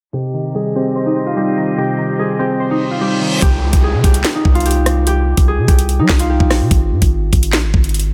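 A ringing, thumb-plucked concert harp carries the melody through this cold, menacing half-time drill cut from a longer piece, colored by tape echo and a low-pass filter. It opens over soft, round electric-piano-like synth keys with chorus and a distant, hollow flute section with vibrato under a filter sweep, until a reverse cymbal and downlifter lead into the drop at 3.4 seconds. From there a deep, sine-toned 808 bass and an up-front electronic drill kit join the harp, with a knocking kick, sharp snare, metallic hi-hats, handclaps and rim clicks in a dry mix.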